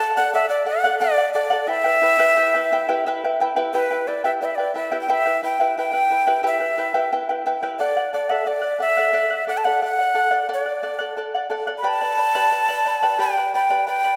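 Earthy and festive, this Andean folk excerpt in 3/4 sets a breathy, hollow cane quena up front on the melody, its crisp, chiffy attack riding over a shimmering, fingerpicked charango whose double strings ring through D, Em and G chords, both bathed in the wet reverb of a scoring stage.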